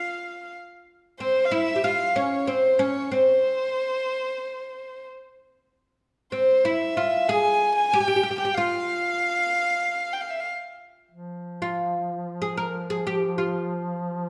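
A woody, plectrum-plucked fretless oud opens this hypnotic, longing Arabic passage in F maqam nahawand at 93 BPM, carrying the melody while a close, airy violin played sul tasto with light vibrato adds a second line above it. The violin falls away at 10.5 seconds, and at 11.1 seconds a mellow duduk enters with a held F3 drone, its folk-style vibrato sitting beneath the oud until the cut at 14.3 seconds. A moderate recital hall reverb gives the whole a sense of space.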